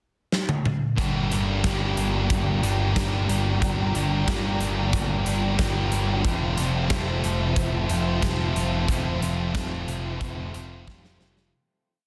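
At 91 BPM in a straight 4/4, a big, punchy rock drum kit opens with a fill in the pickup bar at 0.3 seconds and then settles into a pop groove, while a growling, overdriven electric bass drives eighth notes under a Gm7 that moves to Fmaj7 at 6.2 seconds in this blissful, hazy shoegaze and dream pop piece in F major. Two picked electric guitars strum chords with whammy-bar dips from 1.0 seconds: a biting overdriven one up front trailing reverse reverb, and a dark, thick fuzz one set back with lush chorus. Behind them, an ethereal, airy pad with detuned sawtooth voices, ensemble chorus and its own reverb holds slow-attack chords from 1.5 seconds, all in a dense, heavily limited mix that fades out over a closing drum fill.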